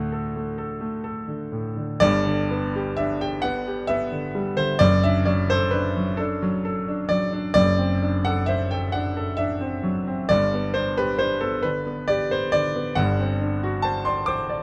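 Heard up front through close, detailed microphones with light reverb, this tender, serene excerpt from a longer romantic classical nocturne features a clear, smooth solo concert grand piano with deep bass and short sustain, moving in a slow, rubato 6/8 at 44 BPM in G major, tuned to A4 = 442 Hz, opening on D before settling into G at 2.0 seconds and drifting through D over F#, D7 over F# and back to G until it ends on D7 over G at 13.0 seconds.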